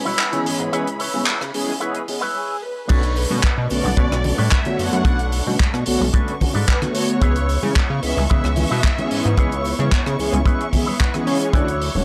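Nu-disco at 111 BPM in B dorian, this sensual, cosmic fragment from a longer piece opens with a build-up and filter sweep before dropping at 2.9 seconds, when the up-front, tight acoustic kick arrives. Underneath, a glossy, retro synth bass with pulse-width modulation and a plucky filter sits forward in the mix, while a dry, polished funk kit with hi-hat, rim click, handclaps and crash keeps time alongside congas and cabasa set back in a live room. A mellow, detuned synth brass carries the accompaniment with chorus, vibrato and a cassette-tape haze, pumping against the kick, and a smooth-topped studio string section holds sustained chords in the background with the same pumping. A dark, clean electric guitar with an envelope filter plays a compressed, fingered riff roughened by 12-bit sampler grit, and a clean guitar fill appears from 10.5 to 11.5 seconds. From 2.4 seconds a lush, dark symphonic violin section sings the melody with portamento and tape echo over chords moving from C#m7 through Bm9 and back to C#m7 before landing on Dmaj9, all within a gritty hardware sound and light small-room ambience.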